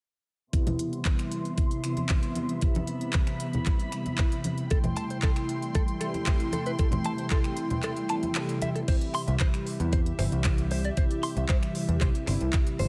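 A knocking, up-front electronic kick in straight four drives this cosmic, sleek nu-disco excerpt, layered with a pop kit of crisp hats, crash, finger snaps and handclaps, while close, dry congas struck with hard hands add percussion through the first half. Round, detuned sawtooth synth brass with chorus, phaser and delay pumps alongside dark, sul tasto studio strings that carry a filter sweep, the chords moving from Cmaj7 to Am7 as a bright, twangy clean guitar riff with analog chorus and delay enters at 4.7 seconds. The kick briefly drops out at 7.8 seconds before the passage settles on C, where a direct, up-front picked bass joins at 9.3 seconds under a light digital reverb.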